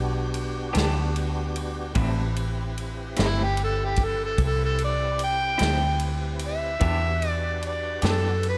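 Lightly reverberant and smoky, this mournful slow blues excerpt in 12/8 at 50 BPM moves from Em7 to Am7 and back as a clean, full tonewheel organ holds sustained chords through a slow rotary speaker with chorus vibrato, a dark, foam-muted fingered electric bass sits round and punchy up front, a natural small-room drum kit with tight kick, medium-tuned snare and ride keeps time, a lo-fi, slightly broken-up guitar through a small old amp adds compressed accompaniment with tremolo and slapback echo, and from 3.2 s a gritty, overdriven harmonica takes the jazz-style solo melody up front with light vibrato, tongue slaps and scooped notes.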